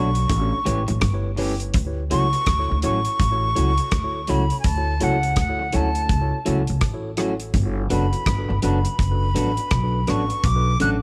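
A breathy, close-miked silver flute carries a tender, romantic lovers rock melody from the first moment, its straight tone touched by tape echo, over a mellow, clean tine electric piano that shares the same echo and a briefly heard, very quiet, twangy guitar riff that drops out at 1.2 seconds. A slightly broken-up electric guitar adds compressed, tremolo-treated stabs, while a woody, thumpy pizzicato upright bass with gut strings sits up front alongside a damped, dry 70s drum kit of tight kick, hi-hat and rim click, entering at 0.1 seconds, all with a swung sixteenth-note feel. Light reverb and small room ambience frame this excerpt as the chords move from A7 through Dmaj7 and Gmaj7 to Bm7.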